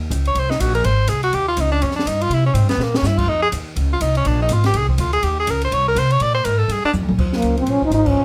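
Playful and warm, this brisk small-group swing and bop passage moves at 246 BPM in Eb mixolydian. A bright, punchy tenor saxophone solos forcefully up front over a woody, pizzicato upright bass and an open acoustic drum kit with a high-tuned snare and boomy kick, all in light reverb. The drums drop in fills at 2.8 and 6.9 seconds, and from 7.3 seconds a breathy, whispered trombone takes the melody with light vibrato and scooped notes before a closing band accent.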